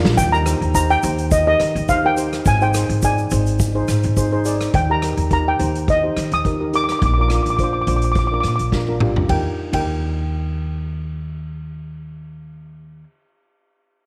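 A mellow lead steel pan sits up front in this festive, carefree calypso at 105 BPM in Eb major, carried over a shimmering double-seconds pan accompaniment, woody pizzicato upright bass and an airy street-band drum kit with a boomy kick that drops out at 9.9 s, while a grainy egg shaker ticks in the background until 4.7 s, the band set in a moderate echo-chamber reverb.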